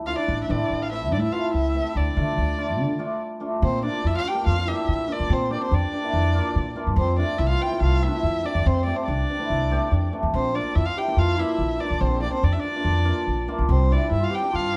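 A woody, growly upright bass sits up front in this soulful, festive klezmer piece, plucked pizzicato on steel strings at 143 BPM in a straight 4/4. A single bowed violin carries the melody, its nasal, boxy tone shaped with vibrato and portamento and set in plate reverb for an expressive line. A dark clarinet plays a second line in a classical style, present yet tucked into the background, while a hammered acoustic cimbalom adds shimmering, ringing accompaniment. After an opening over A minor and D minor, a short break at 3.2 seconds leads into a longer passage from 3.6 seconds that moves through B-flat, F and C. The group is heard from further back in a studio room with moderate reverb, and the clip is cut from a longer performance.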